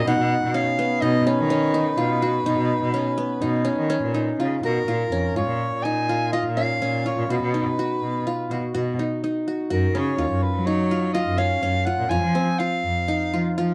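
A warm soprano saxophone with light vibrato carries the melody in this playful, restless contemporary chamber piece in 5/4 at 124 BPM in B lydian, cut from a longer work, over bright-edged, plectrum-plucked qanun arpeggios and a rich, bowed cello bass, the three parts sitting up front in light reverb as the harmony moves from B to A#m at 4.9 s and settles on Fm at 12.1 s.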